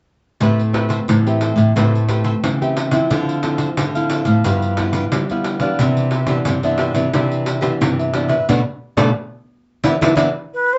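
A mellow silver concert flute gives this nostalgic, bittersweet samba and choro fragment its most striking moment, arriving only at 10.5 seconds with an airy, chiffy, straight tone that sounds distant yet sits up front, slightly unsteady. Before it, from 0.4 seconds, a small ensemble plays together in one room at 89 BPM in a straight 4/4 feel, in A minor and tuned slightly low. A full-bodied fingerpicked nylon-string guitar carries the bass line up front, with audible finger squeak. A second classical nylon-string guitar and a crisp, picked cavaquinho fill out the accompaniment, while a jingly pandeiro with a vintage, band-limited sound keeps the percussion going. The harmony moves through Am9, Dm9, G6 and Cmaj9 before a band accent from 8.5 seconds over Bm7 and E5, all heard in a small, wet room ambience with a soft, dulled top end, cut from a longer piece.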